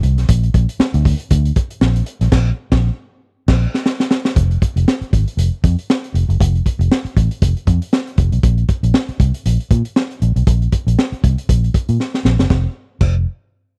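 Funk at 118 BPM with a light sixteenth-note swing, energetic and playful, this short cut pairs a dark, round, foam-muted fingered electric bass ranging from F1 to Bb2 with a crunchy, gritty breakbeat kit of punchy kick, high-tuned snare, hi-hat and dusky crash, both sitting up front in a dry, close 1970s-style sound, with a band accent from 2.3 to 4.4 seconds and drum fills at 3.3 and 12.0 seconds.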